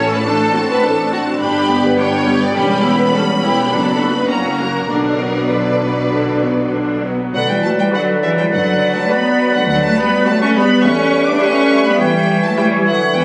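A straight 4/4 pulse at 103 BPM drives this quick, restless classical-period movement in B minor, cut from a longer piece and tuned slightly high at A4 = 445 Hz. From the start, a rich, lush violin section carries the melody between D5 and D6, while a second violin section with a soft attack plays an expressive second line beneath it. An expressive viola section with portamento fills in the accompaniment, and mellow, roomy French horns hold sustained chords. The bass comes from a focused, distant cello section and a double bass section sitting low at E1 to E2. At 7.3 seconds the dramatic second section opens as an airy flute and a warm solo oboe add second lines, and a dark bassoon with a smooth top joins the accompaniment in the background, as the harmony moves through Bm/D, Em and C#dim/E. The orchestra sounds as though it is on a scoring stage with moderate reverb, but it was captured on a phone in a room with a club-like reverb.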